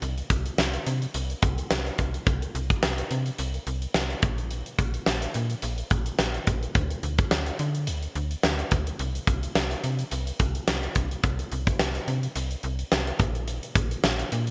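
A big rock drum kit leads this 1980s-style pop section, its punchy kick, fat snare and hi-hat sitting up front with a mid-forward, rolled-off top and a gated reverb that gives the acoustic kit a big-room size. Beneath it, a slap-like FM bass plays from 0.0 to 14.5 seconds, its snappy, metallic attack and digital decay ranging from Bb1 to D3. At 107 BPM in 4/4 with a light swing on the 16ths and a touch of reverb, this romantic, nostalgic passage is cut from a longer piece.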